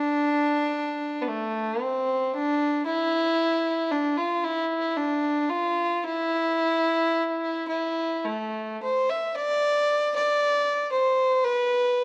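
A lone fiddle carries this brief Celtic folk fragment, bowed by one player with a rich, earthy tone, light vibrato and a smooth top, sitting up front in the sound. The mood is longing and haunting, moving slowly at 56 BPM in 3/4 with a free, rubato feel. The fiddle plays solo for the full 12 seconds, ranging from A3 to E5, with a new section arriving at 9.4 seconds. A moderate recital hall reverb gives the bow a sense of space. Over it lies the sound of worn old cassette tape, its warbly pitch drift lending the performance a faded, dreamlike quality, and the clip is cut from a longer piece.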